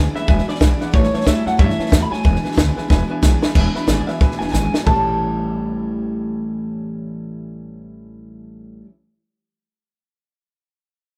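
A swung, rowdy rockabilly tune at 183 BPM in A mixolydian, this short excerpt from a longer piece moves between E7 and A7 with a band playing live together in one room under light reverb. A compact cocktail drum kit sits up front, dry and punchy with a high-tuned snare and dark cymbals, playing fills at 2.9 and 4.5 seconds before dropping out at 5.0 seconds. Beneath it, a woody, thumpy upright bass carries the low end, while one electric guitar through a small old amp plays a twangy, slightly broken-up riff bathed in spring reverb. A second amped electric guitar takes the melody high up in a brighter voice, its tone shimmering with tremolo. Filling in the background, a full-bodied steel-string acoustic guitar is picked in accompaniment and a warm upright piano adds open, long-sustaining accompaniment in its upper register.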